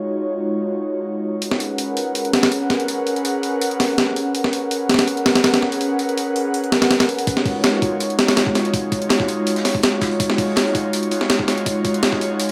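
Frenetic and raw, this drum and bass cut with a jungle edge runs at 164 BPM in Eb minor, drawn from a longer piece. An airy, breathy pad opens alone on sustained chords, its detuned, chorused tone carrying a soft noise layer and slow attack while a filter sweep moves across it through the first 7.3 seconds. At 1.4 seconds a gritty, compressed breakbeat kit arrives up front, with a thumpy kick, medium-tuned snare and high-passed hats, kick and snare. From 7.3 seconds a build-up begins as a second, very quiet breakbeat kit adds saturated hi-hat and snare with a rolled-off top. The chords move from Ebm11 to Abm11 and back to Ebm11, all set in a dark production with a wet echo-chamber reverb.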